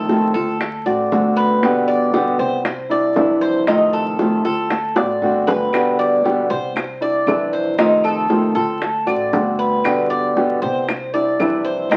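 A straight 4/4 pulse at 117 BPM carries this relaxed, sunny slice of Cuban son and guajira in G major, cut from a longer piece. Up front, a dark, thumb-plucked flamenco guitar supplies the accompaniment while a bright, metallic Cuban tres spins picked arpeggios on its double strings, some of them octave-doubled. Tight, high-tuned bongos keep time in a small-room sound, and a pizzicato upright bass with thumpy gut strings sits in the background. After a drum fill at 5.0 s, woody claves join at 5.7 s, close and dry behind the other parts. The chords cycle through F7, D7, G and Cadd9, all heard through moderate studio reverb and the crackle of a very old 78 rpm record.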